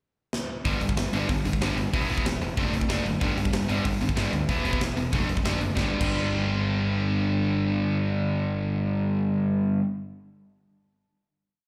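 Punk rock at 188 BPM in G major, this short, whole piece feels rowdy and energetic, opening with a drum fill from 0.3 seconds that leads the band into the verse at 0.7 seconds. The tight metal drum kit sits up front with a saturated, gritty punk fast groove, bright cymbals, a medium-tuned snare and a tight kick, all in a pumping room sound, and it plays until 6.1 seconds. Two overdriven guitars chug palm-muted eighth notes: a sludgy, dark one placed up front and a cranked stack guitar sounding bright from the background. Beneath them, a fuzz-drenched, growly bass drives steady eighth notes through the G, E5 and D/F# changes before everything settles on a final G chord held from 5.8 seconds. The sound carries the feel of a live club gig heard through the venue's PA, with light reverb and small room ambience.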